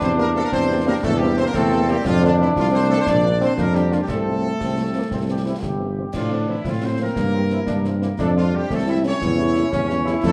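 A mellow tuba sits up front with a soft attack, carrying the bass line of this proud, rousing military-style march for wind band, cut from a longer piece and set in F major in 6/8 at 117 BPM. A distant, roomy trumpet section in a warm classical style plays the melody, while a euphonium with light vibrato adds a second line from the background. A dark, tight trombone section holds sustained chords, and a very quiet French horn section joins with accompaniment at 0.2 seconds. Concert snare drum, clash cymbals with a bright edge and concert bass drum play in an acoustic, small-room sound. The harmony moves from C7/E through F, Bb and C before closing on A7/E, and the whole passage is wrapped in a wet large-studio reverb of 1.3 seconds with a dark, warm overall production.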